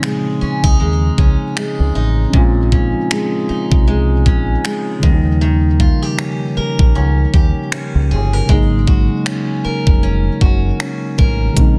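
A knocking trap kit of finger snaps, crisp hi-hats and kick sits up front, its snare softly clipped, driving this late-night, sensual contemporary R&B fragment at 78 BPM with a swung sixteenth feel, while a round, dark dub-style fingered bass enters at 0.4 s, a mellow, clean tine electric piano carries the Bbm11, Eb7 and Ab9sus4 harmony, and a picked steel-string acoustic guitar spins delayed arpeggios with audible finger squeak, all set in a digital ambience under a dense, heavily limited modern master.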